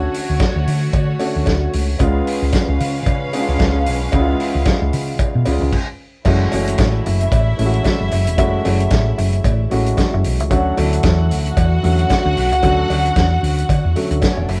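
A swung sixteenth-note disco groove drives this glamorous excerpt, with a soul drum kit of kick, snare, hi-hat and crash cymbal that sounds tight, mid-forward and up front, its dark cymbals and rolled-off top keeping the beat rounded. A fingered, short-scale hollow-body electric bass sits just as close, amped, round and punchy, and is the most prominent part in the mix. A grand piano fills in the accompaniment in the lower middle register, while a lush, bowed string section carries a second line above it with vibrato, a soft attack and a smooth, sul tasto top that feels intimate and warm. A metallic cowbell enters at 0.4 s and stays in the background. The band makes a brief stop at 5.7 s and comes back in at 6.3 s, as the harmony shifts from Dmaj7 and C#7 to F#m9 and F#m7, all heard as a band playing live in one room with moderate reverb.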